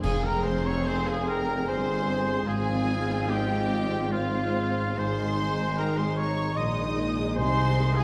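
Bathed in a dark, reverberant concert-hall sound, this lyrical, slow romantic movement for symphony orchestra sways in a rubato triple time, cut from a longer piece. A close, vibrato-rich violin section sings the melody over an airy, hollow flute, an oboe and a very quiet, distant second violin line. A lush viola section, a tight, hushed French horn section, a ringing thumb-plucked harp and a clear trumpet fill the middle, while a mellow tuba, rich double basses and smooth cellos carry the bass; an ensemble accent opens the passage, with bright clash cymbals and concert bass drum sounding until 1.6 seconds.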